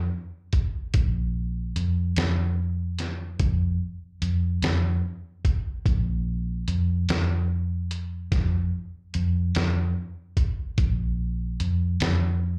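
A slow, straight-feel 12/8 blues with a gritty, rollicking mood, this short cut pairs a dark, round, foam-muted fingered electric bass, amped and up front for the full 12.6 seconds, with a compressed, pitched-down sampler-style drum kit entering at 0.5 seconds, its muffled thumpy kick, medium-tuned snare and hi-hat re-recorded in a large room, all heard as a live gig through a club PA.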